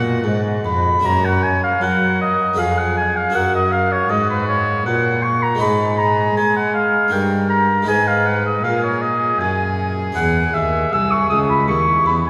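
All four parts sound together from the opening: a radiant, serene baroque-style sonata movement in F# major at 79 BPM in 3/4, tuned to A4 = 444 Hz, with a clear oboe carrying the up-front second line while a gut-strung violin sings the melody with light vibrato from the background. Beneath them a full, brilliant harpsichord supplies the accompaniment and a nasal, reedy period cello holds the bass up front. The whole excerpt, moving from F# through G#m to a closing C#m, is bathed in a long, wet cathedral reverb.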